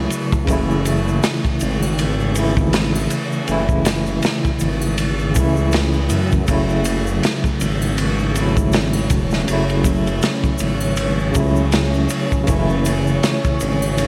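Trip hop at 80 BPM in 4/4, with a lazy 16th-note swing and a melancholic, dark mood, this short cut from a longer piece sits on a progression moving from A/F# to F#m7 and back. An overdriven tine electric piano carries the accompaniment from the start, its barky, bright tone pushed through a combo amp and roughened by tremolo, vintage 12-bit sampler grit and tape echo. Beneath it, a dark detuned saw bass rumbles in the low register with a beating, mellow sustain, while a crunchy breakbeat kit of kick, snare and ride sits up front, saturated and rolled-off, with a tight kick and dusky cymbals. A tube shaker and triangle, along with group handclaps, ticks close and dry in the background. At 8.1 seconds a deep, moody ambient pad enters with slow-blooming sustained chords, thickened by chorus and its own reverb. The production has a glossy 1980s-style digital sheen laced with vinyl crackle and a light studio reverb.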